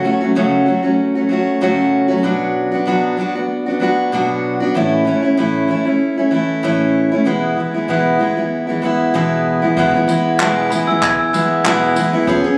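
Acoustic pop at 96 BPM in 4/4 with a light sixteenth-note swing, sunny and carefree in mood, built on a picked steel-string acoustic guitar that sits up front with a warm, finger-squeaking tone as it moves through F#m, Bm, A and E. At 9.8 seconds a jazz brush drum kit joins low in the mix with handclaps, a punchy kick and tambourine under a rolled-off top. At 10.6 seconds a glockenspiel played with soft plastic mallets adds a bell-like, airy second line high above, and the whole passage, cut from a longer piece, has the casual sound of a phone recording in a room with light club reverb and compression.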